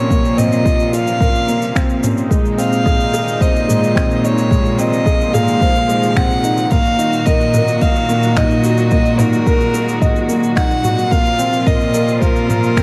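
Piano and strings electronica with an intimate, hypnotic mood, in a straight 4/4 feel, cut from a longer piece. A dark, close violin carries the melody up front with light vibrato, a soft attack and an airy sul tasto bow, its boxy single-player tone touched by digital delay. Beside it, a felt-muted upright piano plays a mellow riff with audible action noise, also through digital delay, while a rich studio string section holds smooth, even chords in the background. A chamber cello section with a reedy gut-string tone anchors the bass on Bb2, pumping against the sidechain. From 0.1 seconds an overdriven, layered electronic kick sits deep and up front, re-recorded in a small room, alongside a produced electronic kit of finger snaps, shaker and toms, both drum parts set in studio reverb over a slow-moving harmony built on a Bb pedal.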